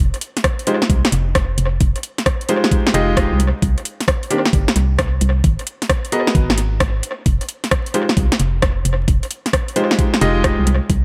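Skippy and moody, this excerpt of two-step UK garage moves at 132 BPM in 4/4 with a heavy 16th-note swing, set in F minor. A hollow, organ-like FM bass sits up front from the start, its fast-attack, decaying notes dark and percussive, pumping against the sidechain. A layered garage kit joins at 0.1 seconds with metallic hi-hats, a rim click and a woody snare, roughened by overdrive and trailed by analog delay, while an overdriven electronic kick knocks in from 0.4 seconds. From 0.7 seconds a bright baby grand piano plays brilliant, worn stabs, intimate enough that its action noise is audible, each hit echoed through analog delay. The harmony moves from Fm9 to a chordless stretch at 3.4 seconds, then through Abm9 back to Fm9. Light reverb, digital ambience and vinyl crackle fill out the echo-heavy mix.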